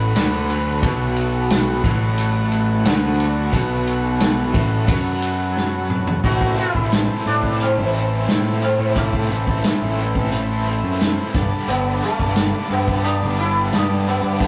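Hypnotic and mysterious, this psychedelic rock excerpt at 88 BPM in A dorian pairs a buzzy, lightly vibrato combo organ's sustained chords with a double-tracked hollow-body guitar riff carrying tremolo, a round fuzz-driven picked bass up front, and a punchy vintage drum kit whose fill at 5.6 s ushers in a bright, buzzing sitar melody with shimmering sympathetic strings at 6.2 s, all captured in a rough rehearsal-room sound with tube saturation and a small room's reverb.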